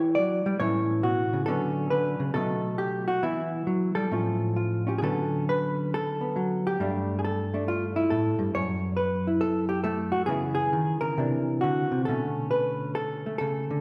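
A dark, clean, compressed hollow-body electric guitar sits up front and plays fingered solo jazz in D major at 137 BPM, its swung eighths loosened by rubato, moving playfully and with sophistication through chords such as Em9, B7, Aaug and C9 across two matching passages that turn at 5.0 seconds, all bathed in the heavy reverb of a church or concert hall in this short cut from a longer piece.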